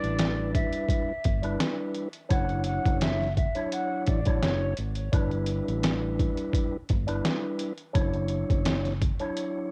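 Boom-bap hip-hop at 85 BPM in D major, this warm, nostalgic cut from a longer piece sways on a swung groove while the chords move between G6 and Dmaj7/F#. Sampler-style drums sit up front, pitched down, muffled and overdriven with a thumpy kick, beside a round, dark fingered electric bass, while a percussive tonewheel organ with key click and fast rotary speaker carries the accompaniment through 9.7 seconds. A breathy, hollow jazz flute with a soft attack and analog delay floats distant over the top, playing a short melody that stops at 4.7 seconds, all dry and tinted by cassette home recording.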